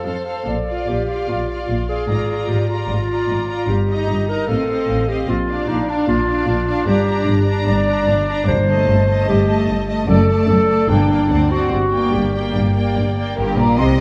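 An up-front solo clarinet carries a warm second line through this stormy, urgent excerpt from a fast romantic symphonic movement, moving at 149 BPM in 4/4 with a rubato feel. Lush bowed violins sing the melody with vibrato over a second violin line, rich violas, clear cellos and distant double basses, as the music turns from Bb major to G minor at 6.9 s. Very quiet timpani enter at 8.5 s, and an airy concert flute appears briefly at 13.4 s, all within a wet concert-hall reverb and a dark production.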